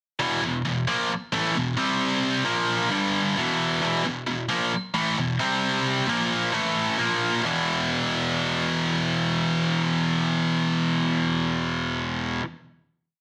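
At 133 BPM in a straight 4/4, this short, aggressive, heavy rock piece in E minor features a lone high-gain, double-tracked electric guitar, up front and bright with distortion, picking a power-chord riff from E5 through C5, A#5 and G5 until a final E5 chord rings out from 7.4 seconds in a moderate studio reverb under a dense, heavily limited modern master.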